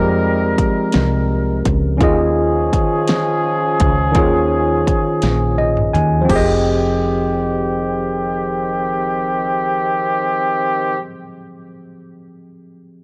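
A slow six-eight pulse carries this sultry, yearning R&B fragment, cut from a longer piece. A barky, lightly overdriven tine electric piano sits up front over a round, woody fretless bass with tube saturation and distant, roomy horn stabs with light vibrato, as the chords move between Fm9 and Eb9sus4. A punchy, overdriven pop drum kit with a fat snare and metallic hats enters at 0.6 seconds, the drums and electric piano both play fills from 5.2 seconds, and the kit stops at 6.5 seconds, all within a dry, worn sound that warbles like old cassette tape with drifting pitch.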